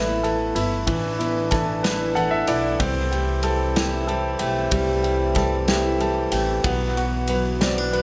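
Set in a reverberant recital hall with a big, arena-like sound, this swaying, romantic pop ballad in 6/8 moves at 62 BPM in dotted quarters with a straight feel, and it is cut from a longer piece. Up front, a warm concert grand piano carries the accompaniment with deep bass, long sustain and audible action noise, a slapback echo trailing its notes, and it plays a fill from 1.8 to 2.8 seconds. Behind it, a mellow, distant French horn section holds sustained chords in a classical style, while a bright, jumbo-bodied steel-string acoustic guitar sits in the background, fingerpicking arpeggios with finger squeak under tape and slapback echo. A woody, growly pizzicato upright bass anchors the low end, and an airy, polished studio drum kit with a tight kick, medium-tuned snare and ride cymbal enters at 0.2 seconds. The harmony drifts from Asus2 to C6 at 2.8 seconds, then settles on a rootless Asus4 at 6.7 seconds.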